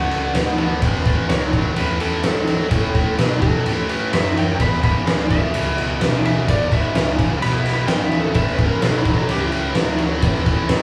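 Driving and raunchy, this blues rock power trio cut with a southern rock edge runs at 127 BPM in a straight 4/4 over D, A and E chords, as a warm, slightly broken-up lead guitar solos from 0.0 s over a double-tracked overdriven rhythm riff, a growly fuzz bass, a barely audible organ with slow rotary swirl, and an oversized low-tuned drum kit with a punchy kick, fat snare and dark cymbals sitting up front, all captured live in a small room with light reverb.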